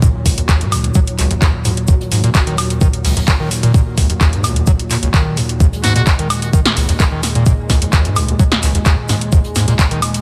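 Trippy and driving, this acid house excerpt at 129 BPM in Eb minor rides a thumpy, overdriven electronic kick up front, punchy dry drum-machine snare, handclaps, metallic hats and woodblock, and a brushed jazz kit in the background, beneath a squelchy, resonant acid bass riff and detuned, warbling analog pad chords that pump, while a buzzy metal-muted trumpet slips in a single scooped, delayed Gb4 at 5.8 seconds, all set in a small room.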